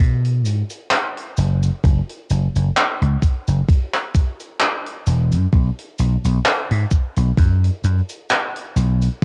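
Melancholic and woozy, this slow vaporwave excerpt at 65 BPM in 4/4 with a gentle 16th-note swing opens on a punchy, amped vintage slap bass spanning E1 to B2. It is joined at 0.2 seconds by a swinging big-band drum kit with cabasa, handclaps and hi-hat, natural and roomy under cassette tape coloring, and at 1.8 seconds by a thumpy, sampler-style electronic kick, all set up front in a dry home cassette recording.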